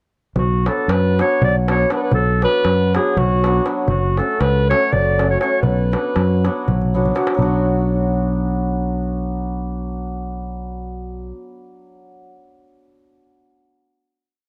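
Balkan folk in the spirit of a Balkan wedding band, this short, fiery yet bittersweet piece runs in a straight 7/8, with a vintage-toned clarinet up front spinning a motif-based melody in sentence-like phrases, touched by tape echo, in a classical-style solo. Beneath it, a round, directly amped fingered electric bass holds root and fifth on the main beats, a shimmering hammered dulcimer rings out close-voiced off-beat chords, and a soft-handed clay darbuka with a band-limited natural-skin tone plays a two-stick pattern. A drum fill at 6.8 seconds leads into a sustained final chord at 7.4 seconds, all captured in a dry, close 1970s-style studio sound.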